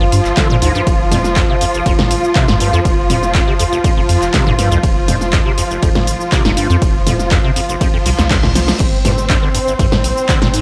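A gritty, raw stretch of acid house opens at 0.0 seconds with a dark, veiled string section bowing sustained chords up front, its con sordino tone pumping against the sidechain, while a squelchy, resonant acid bass riff runs through a phaser and analog chorus. Beneath them sits a round, deep analog bass in the background, also pumping with the sidechain. A punchy analog drum machine with overdrive brings crash and ride cymbals, handclaps, hi-hat, shaker, snare and toms, its snare, clap and hats carrying a short room, all of it re-recorded in a large space, and an electronic kick drum drives the straight 4/4 pulse. The harmony moves from G7(no3) to F5. A reverse cymbal rises in the background from 8.0 seconds as a drum fill arrives, and the chords drop away at 8.8 seconds, while a light reverb surrounds this cut from a longer piece.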